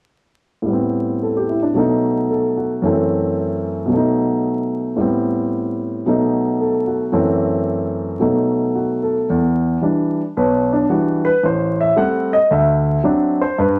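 A warm grand piano plays alone and up front in this short, swinging jazz excerpt in E minor at 112 BPM, spanning from low A1 up to F#5 across its brief run from 0.6 to 13.8 seconds. The moody opening circles through Am9, B7 and F#m7b5 before shifting at 9.3 seconds to a passage moving from Em7 through Am7 to D7. A wet studio reverb and a layer of vinyl crackle give the sound a hazy, lived-in character.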